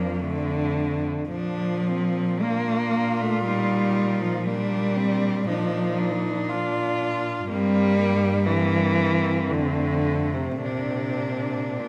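An up-front bowed cello carries the accompaniment in the low register, expressive and soft-edged with portamento, at the heart of this tender, serene classical passage for cello ensemble in Bb major. It moves in a slow, rubato 3/4 at 58 BPM with uneven beats. Above it, a rich, smooth cello sings the melody with vibrato and a clear, focused cello shapes the second line, while beneath it an intimate bass cello with light vibrato and airy bowing settles under the chords from F through Eb/Bb and Gm back home to Bb. All four sound through the full 11.9 seconds in a moderate concert hall reverb.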